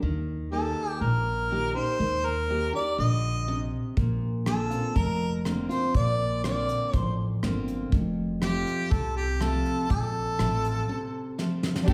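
Picked steel-string acoustic guitar, full-bodied and dreadnought-toned, opens this heartbroken, brooding honky-tonk and classic country excerpt alongside a woody, dark pizzicato upright bass, moving at 122 BPM in a straight 4/4. At 0.5 seconds a warm harmonica takes the melody up front, in a solo, jazz style with light vibrato, scooped notes and a slapback echo, its tone distant and roomy. A soft brush drum kit joins at 4.0 seconds with a fat snare, punchy kick, hi-hat, ride cymbal and rim click, while the harmony passes from Eb to Bbadd9 and then F. A break arrives near the end, capped by a short drum fill, before an intimate chamber string section enters at 11.9 seconds with bowed, sul tasto sustained chords. The whole band sits back in a wet recital hall reverb, lending the mournful tune a lingering, spacious sound.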